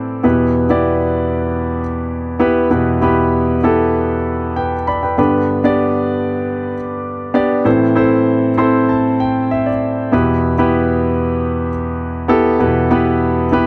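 A clear concert grand piano plays alone in this dramatic, driving pop excerpt, its deep bass, long sustain and audible action noise caught up front in a dry, intimate small room, moving from Em through G and Am back to Em with a fill between 8.3 and 10.1 seconds.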